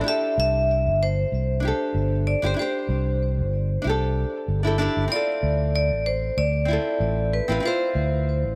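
A lightly swung sixteenth-note feel in 4/4 carries this smooth, blissful sunset chillout excerpt, which moves from a C5 chord to Dm7 at 5.1 seconds. A bright, ringing vibraphone played with hard mallets carries the melody with a medium motor vibrato and tape echo, over a warm, fingerpicked nylon-string guitar. A dark, round, punchy electric bass enters at 0.4 seconds, and light reverb gives everything a small-room ambience.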